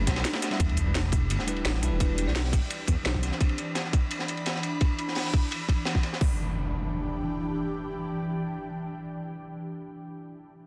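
A tight, up-front electronic kick and crisp hats drive this rolling, soulful liquid drum and bass excerpt at 171 BPM in E minor, layered with a cracking snare and a gritty, dark acoustic breakbeat, while a smooth saturated synth bass and a bell-like, clean electric piano with phaser and delay play alongside an ethereal detuned pad that pumps through chords from Bm7 to Em7 and Cmaj9, punctuated by a sub drop and impact at 0.6 s and again from 6.2 s.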